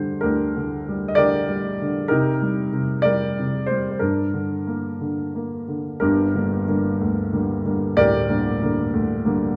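A dark, mellow grand piano sits up front in this short, reflective classical fragment in G minor, its lyrical solo line unfolding with rubato in a slow 6/8 at around 59-64 BPM, ranging from D1 to Eb5 over Gm, Cm7 and back to Gm, with short sustain and a light reverb lending a natural, melancholic air.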